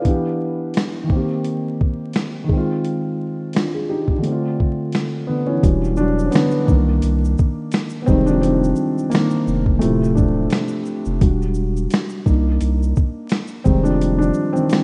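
A soft, dark felt-muted upright piano opens this hazy, nostalgic lo-fi hip hop excerpt at 86 BPM, sitting up front through a low-pass filter as it moves through minor seventh chords like Em7, Cm7, Fm7 and Dm7. Gritty, pitched-down boom bap drums join almost at once with a thumpy kick, medium-tuned snare, hi-hat, shaker and finger snaps in a lightly swung, compressed, tape-warm groove. At 5.6 seconds a deep, thick saturated sub bass arrives as the piano takes a mellow, intimate solo, all wrapped in light reverb and vinyl crackle in a rough home-demo mix.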